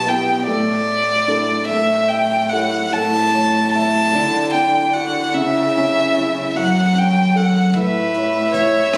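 A warm, bowed violin carries the melody up front in this tender, hopeful acoustic folk-pop ballad, played sul tasto with light vibrato, a soft attack and an airy, intimate bow. It moves slowly at 50 BPM in a straight 6/8, over a grand piano accompaniment with audible action noise and a dark, veiled cello bass, muted con sordino and bowed with vibrato and portamento. At 2.9 seconds a vibraphone with soft mallets enters on mellow, ringing metallic arpeggios, motor off, as the harmony moves through Dadd9, C#m and F#m. Near the close, at 7.7 seconds, a vintage brush drum kit adds hi-hat, punchy kick and rim clicks with a rolled-off top, and a moment later, at 7.8 seconds, a rich, smooth viola joins up front on a second line. The phone recording, made in the room, sits in moderate large studio reverb with compression, and the fragment is cut from a longer piece.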